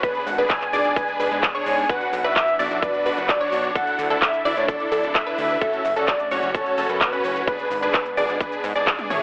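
Euphoric and emotional, this festival progressive house excerpt moves at 129 BPM in a straight 4/4 over a G#dim, Bm, Dsus2, F#m progression, with a breathy, flute-like synth lead carrying the melody through ensemble chorus and dub echo above huge, bright supersaw chords with 12-bit sampler grit, lush pumping unison pluck arpeggios in the background, and a very quiet, airy pad. A punchy, overdriven electronic kick and a crisp big-room kit of handclaps, hi-hat, shaker and toms sit up front in studio reverb, while a fat, evolving analog bass with a filter sweep enters at 0.3 seconds and pumps with the sidechain. The kick drops out at 9.0 seconds as a drum fill arrives, and the whole mix has a thin telephone-like tone in a moderate room reverb.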